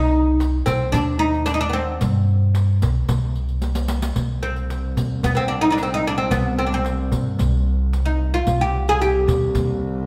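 A plectrum-plucked, fretless oud leads this hypnotic, longing Arabic maqam ensemble excerpt, its double strings woody and up front in a moderate recital hall reverb. A growly, thumpy pizzicato upright bass with steel strings stands forward as well, while a clay-shelled darbuka with natural skin and a close riq with dark jingles keep a straight 4/4 pulse, with a drum fill at 3.6 s. From 4.2 s a single bowed double bass adds a clear, focused low drone with vibrato and a smooth top.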